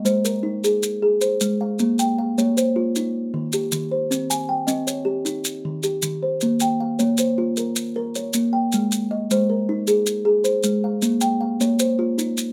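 A woody, hollow-toned kalimba plays an up-front cycle of arpeggios from the start, joined at 0.1 seconds by grainy, dry maracas, in this hypnotic, trance-like southern African traditional piece in Bb dorian, cut from a longer work, moving at 104 BPM in a straight 12/8 through chords of Ab, Bbm, Eb and Cm in a close, detailed studio sound with moderate reverb.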